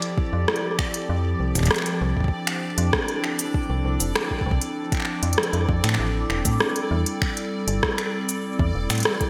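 A metallic FM bass with a fast, decaying attack and tube saturation sits up front in this glitchy, eerie IDM excerpt. A deep electronic kick enters at 0.2 s beside an industrial kit of cabasa, finger snaps, smooth hi-hat and rim click, treated with gated reverb and digital delay. Beneath them a dark, warbling tape-like pad of detuned square and triangle tones holds sustained chords moving from Fmaj9 to Am7, while a faint, bright sawtooth texture bubbles through random resonant filter steps, all within a moderate, lush hall and a 1980s-style digital production.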